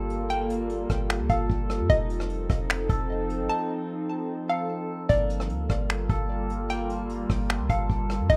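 Atmospheric cloud-rap hip hop in G minor at 150 BPM with a half-time feel, this ethereal, hazy excerpt pairs a hollow, bouncy square pluck melody with chorus and digital delay over a warbling, nostalgic pad treated with chorus, reverb, phaser and sidechain pumping, joined by twangy clean electric guitar arpeggios with delay, a deep, boomy 808-style bass and an up-front brush kit of finger snaps, hi-hat, punchy kick and rim click entering at 0.1 seconds, moving from Gm9 to F7 and back, with a break from 3.5 to 5.1 seconds, all in a rough home-demo sound with studio ambience.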